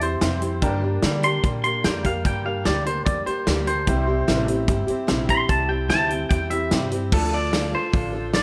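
Moderate large-studio reverb surrounds this brooding, lonesome stretch of honky-tonk and classic country at 148 BPM in a straight 4/4, cut from a longer piece. Up front, a twangy, compressed electric guitar carries a clean solo over C and G minor chords, backed by a boxy, picked archtop acoustic guitar, a woody, growly pizzicato upright bass and a natural drum kit with punchy kick, snare, hi-hat and crash. A very quiet baby grand piano adds intimate accompaniment with audible action noise until 7.1 s, when the solo ends and the harmony moves to D minor.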